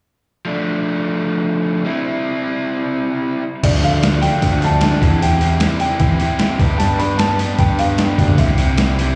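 An overdriven, dark electric guitar opens this cool, restless indie rock piece alone at 0.5 s, playing a compressed, picked riff with slapback echo at 151 BPM in D dorian. At 3.6 s a growling, amped bass, a gritty sampler-style drum kit with a thumpy kick, and a mellow, woody upright piano melody with plate reverb and analog delay join over Dm, C/E and Gadd9 chords. It sounds like a live gig heard through a venue's PA, with recital hall reverb and a muffled top end.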